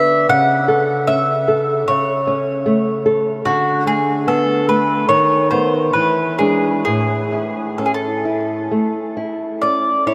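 A romantic duo for mandolin and classical guitar in A major, this tender, lyrical fragment drifts in a rubato 4/4 at roughly 64-77 BPM, its tuning set slightly low at A4 = 438 Hz. The woody, double-strung mandolin carries the melody up front with a touch of tape echo, while the dark, thumb-plucked nylon-string guitar supports it from A2 to B4 through a progression that moves from A/C# through Bm7/D, B7/D# and E7 before settling on A at 6.9 seconds. Both play throughout the 10.1-second cut from a longer piece, bathed in a huge ambient reverb with a 6.9-second tail that gives the mix a dreamy, soaked glow.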